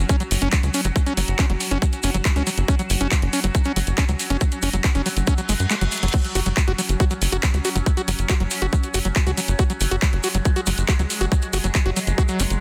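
A dense, heavily limited modern mix with light reverb carries this hypnotic, psychedelic trance passage, cut from a longer piece. An up-front, overdriven electronic kick and a dark, punchy sawtooth sequencer bass drive the straight 4/4 groove, joined by a squelchy, distorted acid bass riff with digital delay and sidechain pumping, an overdriven electronic kit of bright hats, handclaps and crash cymbal, and grainy, mellow maracas in the background. Alongside them a bright drone of sustained chords moves its overtones through chorus and phaser, and a reverse cymbal appears at 5.4 seconds as the kick drops out at 5.7 seconds, with a drum fill following at 5.9 seconds.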